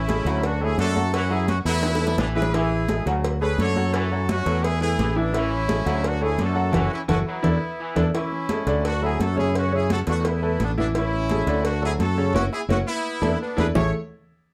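A joyful, festive salsa excerpt in straight 4/4 finds a punchy, bright horn section carrying the melody up front over a worn concert grand piano with short sustain, a growly fretless electric bass, high-tuned congas in the background, tight cowbell and bongos, and a vintage trombone section playing a second line until 8.0 seconds, all in a moderate studio ambience and marked by drum fills and band accents.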